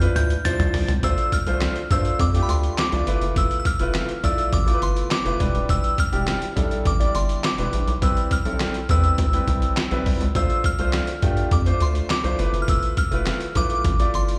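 Early-eighties boogie funk in D dorian at 103 BPM, this slick, danceable excerpt is cut from a longer piece and moves in a straight 4/4. It opens with a drum fill and a brief solo from a glassy, crystalline FM synth bell that carries the melody throughout, its bright tone shimmering with chorus, slapback echo and tape echo. A clear concert grand piano with deep bass and long sustain supplies the accompaniment, touched by its own slapback echo, while a rubbery, hollow square bass with a bouncy filter pluck and a nasal edge anchors the low end. The trip hop sampler-style drum kit sits up front, compressed, pitched down and gritty with overdrive, pairing a thumpy kick and medium-tuned snare with hi-hat, toms and handclaps. From 1.0 seconds the harmony cycles through Dm7, G13, Em7 and Cmaj7 before returning to Dm7 and G13, all heard as a live gig through the venue's PA with a touch of club reverb.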